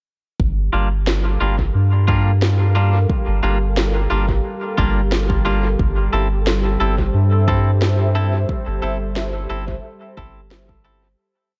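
A dry, echo-heavy mix gives this short ambient dub piece a spacious, hazy mood at 89 BPM in G dorian, moving from Gm7 to Am/G at 5.8 seconds over a gently swung groove. A round, mellow sub bass sits up front, while a deep, soft electronic kick and a woody, sparse snare trailing dub echo carry a large-room character. A clean, picked semi-hollow guitar, filtered and echoed, plays off-beat chord stabs in one shape moved in parallel alongside an airy, breathy, detuned pad with chorus that fades in from 0.4 seconds and fades out from 7.6 seconds.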